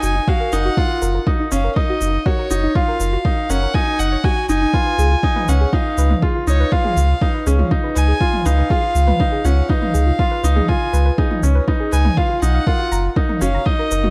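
A reedy, gut-string violin carries the tender melody of this luminous piano-and-strings electronica excerpt, joined by a bright concert grand piano riff and soft, round plucked arpeggios set in the background. A deep sine sub bass sits up front with sidechain pumping, which also shapes the pluck, while an electronic shaker and toms play from the start and a punchy kick drum enters at 0.3 seconds. Delay trails the violin, piano and pluck, and the dark, warm production is set in a moderate echo-chamber reverb over F#6 and C#7 harmonies.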